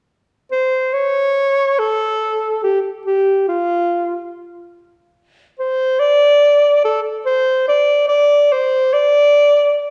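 A warm, vibrato-laden alto saxophone plays alone and up front in classical style, its smooth top ringing through a wet recital-hall reverb in this earthy, melancholic Andean folk fragment in an unhurried triple metre, entering at 0.5 seconds and holding until 9.9 seconds.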